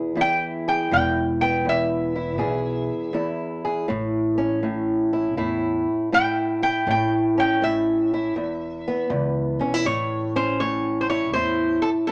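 Acoustic country blues in A major at a relaxed, swung 81 BPM in 4/4, soulful and laid-back, cut from a longer piece. A fingerpicked, ladder-braced acoustic guitar with old strings gives a dark, boxy accompaniment up front, while a nasal, metallic lap resonator guitar, played with fingerpicks and a steel bar, carries the melody from 0.2 seconds and takes a slide solo through 9.8 seconds. A pizzicato upright bass with steel strings adds a woody low end from 0.9 seconds, all set in a moderate studio reverb before a new section begins at 9.8 seconds.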